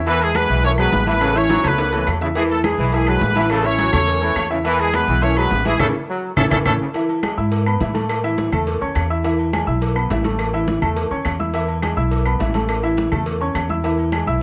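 Grand piano and upright bass open this sunny, danceable salsa cut from a longer piece, with a bright horn section and trombones arriving a moment later over a bed of congas, cowbell, agogo bells and timbales, and claves. At a brisk 209 BPM in a straight 4/4, the harmony moves steadily between E and A in E major. The horn section carries the melody up front with a punchy, close-miked sound and vibrato, while the trombone section plays a tight second line tucked in the background. A drum fill arrives early on, and a second fill together with a full band accent marks the end of the first section. The horns and trombones drop out by 6.9 seconds, leaving the piano, bass and percussion to carry the rest. The polished, long-sustaining piano supplies the accompaniment, and the pizzicato gut-string bass sits up front with a thumpy, woody tone. The background percussion mixes ringing congas, a tight high-tuned cowbell, metallic agogo bells and timbales, and woody claves, all set in light, small-room reverb.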